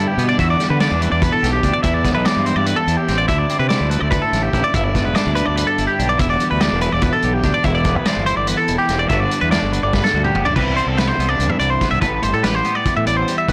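Bright, twangy twelve-string electric guitar arpeggios ring out on top with plate reverb, while a second clean, up-front twelve-string picks out accompaniment through spring reverb in this wistful, intricate math rock and midwest emo excerpt at 289 BPM in 7/8. A round, punchy fuzz bass and a loose indie drum kit with dark cymbals and a tight kick move through Em9, Cmaj7 and Gmaj9. A drum fill at 9.9 seconds leads into a new section on Cmaj9 and Am11 at 10.6 seconds, all within a blown-out, overdriven recording.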